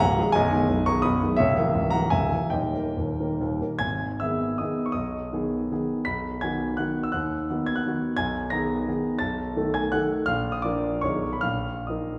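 Wistful and capricious, this brief classical passage from a longer piece is a romantic triple-time dance in 3/4 with dotted rhythms and a flexible, rubato feel. A solo grand piano plays throughout, its warm, up-front tone spanning from the deep bass to the high treble, and the harmony leans toward a brooding minor before turning to a new section at 3.8 seconds. The instrument is heard from further back in a recital hall whose wet reverb lends the dance a lingering, airy halo.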